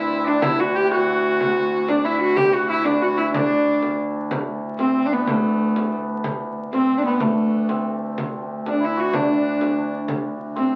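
A festive, ancient-sounding medieval dance in a straight 6/8 at 124 BPM in D mixolydian opens with a dark, woody, biting bowed viola da gamba carrying the melody up front with light vibrato, beside a shimmering hammered dulcimer, a clear folk-style shawm and the reedy, breathing drone of a pedal harmonium on a low D. A small, bright frame drum played with hard hands joins at 0.4 seconds, and the shawm drops out at 4.0 seconds, just before the dance moves into a new section at 4.3 seconds. The whole cut sits in a wet studio reverb and carries the crackle of a very old 78 rpm record, heard here as a fragment of a longer piece.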